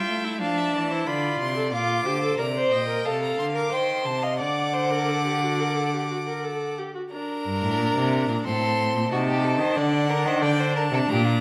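Elegant and joyful, this baroque-style fugue for string quartet sets two bowed violins in focused, vibrato-rich tone, one carrying the high melody and the other a second line beneath it, over a smooth, even viola accompaniment. An up-front cello anchors the bass with a rich sound, and the quartet sits in a reverberant recital hall. Cut from a longer piece, it moves through minor-key harmony before shifting into a new section at 7.1 seconds that closes on a D7 chord.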